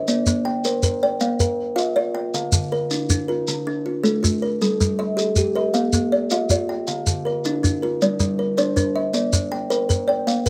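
Southern African traditional music in a hypnotic mbira-style interlocking cycle at 106 BPM in 12/8, this brief excerpt pairs two up-front kalimbas playing woody, hollow-box arpeggios (one with short, airy thumb plucks, the other ringing and touched by a slapback echo) with a grainy, mellow shekere, all cycling through Bb, Dm and Gm in a dry outdoor setting.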